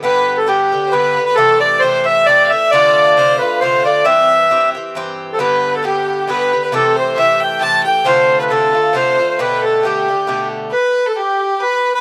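Celtic folk in a lively, rollicking waltz at 135 BPM in 3/4, with a lilting swing on the eighth notes and a G mixolydian colour. The accordion carries the melody up front, its reedy, hollow, vintage tone sounding pleasingly band-limited. A bright fiddle, a single bowed player with light vibrato and a focused sound, traces a second line in the same register at a quieter level. The Irish bouzouki supplies picked accompaniment from its double strings, acoustic and metallic, moving through G, Am7, Dm7 and C before settling on Gadd9, then drops out at 10.7 seconds, leaving accordion and fiddle to carry the final moments to 12.0 seconds. All three parts share a slapback echo, and the open-air recording has little reverb, giving this excerpt from a longer piece a dry presence.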